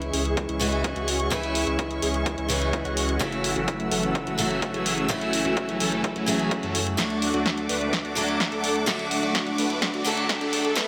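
Huge, detuned supersaw chords with phaser, delay and a filter sweep lead this emotional, powerful festival progressive house build-up, riding over a boxy picked steel-string acoustic guitar with delay, a dark, woody bowed chamber string section and a thick saturated sub bass, those four parts pumping with sidechain, while a punchy up-front house kit with bright hats builds into a drum fill from 7.0 s, an overdriven electronic kick sits in the background from 0.4 s, and a very quiet riser enters at 9.0 s, set in a moderate hall reverb.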